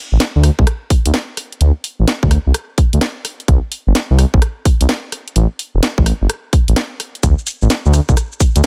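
A deep, rumbling detuned saw bass with a beating tone and sidechain pumping leads this skippy, late-night two-step UK garage excerpt at 128 BPM, joined up front by a tight electronic kick and a tape-warm garage kit of hi-hat, rim click, shaker and cracking snare, all swung on the sixteenths in a dry, close mix.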